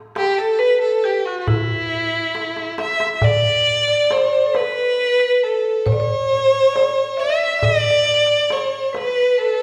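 Set in a straight 10/8 at 137 BPM counted in eighths, this Arabic maqam ensemble piece moves in E maqam bayati, tuned to A4 = 442 Hz, with a melancholic, longing mood. A single bowed violin carries the melody up front, its dark, expressive tone colored by vibrato and portamento and rounded off by a smooth top as it ranges from E4 to E5. Alongside it, a marimba played with hard mallets on rosewood bars traces a second line across the same span, bright and woody yet sitting in the background. A darbuka with a clay shell and natural skin adds gentle, soft-handed percussion with an acoustic, live-room character, and it plays a fill from 2.3 to 3.2 seconds before the music moves into a new section at 3.2 seconds. The whole ensemble sits in a church or concert hall with a lush recital-hall reverb lasting about 1.5 seconds, and this short passage is cut from a longer piece.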